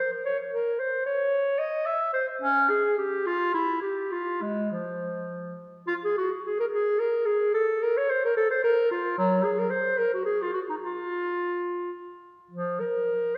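A solo clarinet sounds clear and soft-edged, set back in the wet bloom of a concert hall whose reverb lingers for about 2.1 seconds, so the instrument feels both distant and close at hand. This is a short cut from a longer classical piece, a baroque-style fantasia for unaccompanied clarinet in 3/4, moving at roughly 100 to 114 BPM with a rubato, flowing feel. The mood is grave, beginning in F minor before turning to B-flat minor at 5.9 seconds. The clarinet carries everything alone from 0.0 to 13.4 seconds, ranging from F3 up to E5 with gentle, rounded attacks. Its phrasing stays in a poised classical manner, and the resonant room lends the line a spacious, solemn glow.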